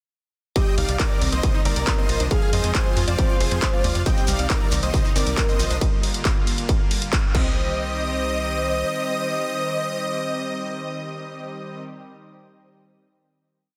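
Dense and heavily limited with light digital ambience, this soaring, driving uplifting trance piece in C minor at 137 BPM launches its drop at 0.6 seconds with a huge, euphoric supersaw lead riffing in thirds and sixths over a velvety second synth line with chorus and tremolo, a thick, warbling pad, a bright pluck arpeggio in the background, a distorted four-on-the-floor kick, a programmed techno kit of hats, claps, ride and crash, a punchy, galloping sixteenth-note sequencer bass entering at 0.8 seconds and a faint, grainy shekere from 4.1 seconds. The drums stop at 7.4 seconds, and the leads and pad carry the final hit as the pluck drops out at 7.8 seconds and the bass at 8.8 seconds.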